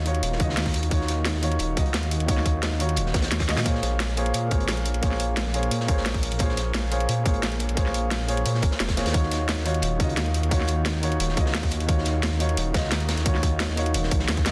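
A straight 4/4 liquid drum and bass groove drives this lush, dreamy excerpt: a tight, overdriven electronic kick, a layered drum and bass kit with cracking snare and bright hats, and a gritty, rolled-off breakbeat kit tucked in the background, with a drum fill at 3.4 seconds, while an up-front, menacing detuned saw bass with a filter swell and a dark, mellow concert grand piano with digital delay move over Ebm7 and Bbm7 chords in light small-room ambience.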